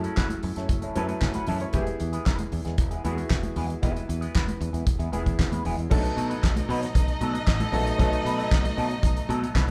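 Set in a live room with moderate large-studio reverb, this glamorous, danceable disco excerpt rides on a dry, up-front 70s drum kit with a fat snare, tight kick, dark cymbals, hi-hat, crash and handclaps, joined by a bright fingered electric bass, a clear baby grand piano, a clean semi-hollow electric guitar through wah, and very quiet congas over F#m7 and E, until a lush, vibrato-rich violin section enters at 5.9 s as the harmony moves to B7.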